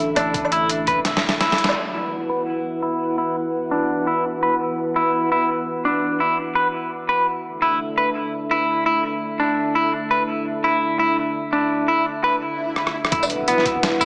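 Tense and dark, this half-time drum and bass fragment sets a moody, detuned sawtooth pad with chorus and sidechain pumping up front against bright, clean hollow-body electric guitar arpeggios through a low-pass filter and diffuse delay, while a gritty, pitched-down boom bap kit of hi-hat, rim click, snare, tambourine and woodblock joins a thumpy background kick at the start and returns with a fill near 12.8 seconds during a break, a deep sine 808 bass sounds beneath them at those same edges, and an electronic swell from 12.5 seconds and an impact at 13.1 seconds close out a dreamy, plate-reverb-soaked mix with a small speaker sound.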